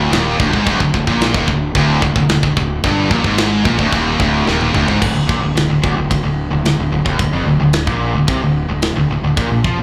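Three distorted, picked guitars open this relentless, epic heavy metal passage at 110 BPM alongside a dark, round, fuzz-laden fingered bass, with two bright guitars sitting in the background and a double-tracked high-gain guitar up front over an Ebmaj7/D chord. A tight metal kit enters at 0.1 s with china, crash and ride cymbals, a medium-tuned snare, toms and a tight kick, and a drum fill from 4.5 s leads into a second section at 5.0 s, marked N.C., where the front guitar drops out. The whole cut is heard as a live gig through the venue's PA, carrying light club reverb, and it is taken from a longer piece.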